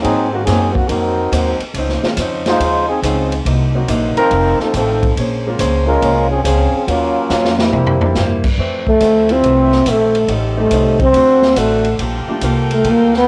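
A dark, vintage-sounding trombone section with vibrato leads this joyful, swinging big band excerpt, backed by a clear baby grand piano in the background, a boxy picked archtop guitar, a woody pizzicato upright bass and a punchy big-band drum kit with a cassette-tape tint, which plays a fill just before the section drops out at 8.4 seconds. At 8.6 seconds a clear saxophone section enters with sustained chords in the background, and at 8.9 seconds a mellow, breathy solo trombone takes the melody up front, intimate and whispered. The whole excerpt sits in a modest small-room ambience with the character of a home cassette recording.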